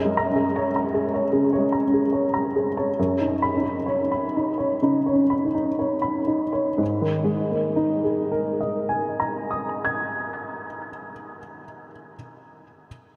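Neoclassical minimalist piano in a reflective, wistful mood, this brief excerpt features a solo upright piano, intimate and woody with audible action noise, slightly detuned and short in sustain, played rubato with tape echo and slowing down over its first 6.8 seconds as it moves from F#add9 through Badd9/F# to G#sus2, all set up front in a dreamy mix soaked in huge ambient reverb.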